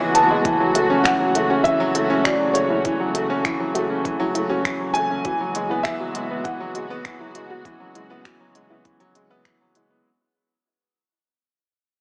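A straight 4/4 pulse of finger snaps, clicky hi-hat and a muffled, overdriven kick underpins this hypnotic, intimate piano-and-strings electronica excerpt, where a clear grand piano riff and a felt-muted upright piano melody sit alongside a soft chorused pluck arpeggio, veiled con sordino strings and a deep round bass that both pump under sidechain, all bathed in lush hall reverb with a small-speaker sound as the fade-out begins at 0.5 seconds.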